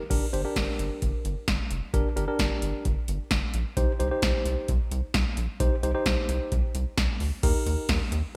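An up-front analog drum machine drives this nostalgic, upbeat synth-pop fragment at 131 BPM, with a deep kick, punchy snare and metallic hats, plus crash cymbal, all bathed in gated reverb. A rubbery, bouncy square bass with a resonant filter pluck and a dark, saturated edge sits underneath, while a worn, slightly out-of-tune tine electric piano plays clean accompaniment over a Gm to Cm progression that lands on Eb near 7.4 seconds. The bright 1980s-style digital production adds light reverb and a digital ambience to this short cut from a longer piece.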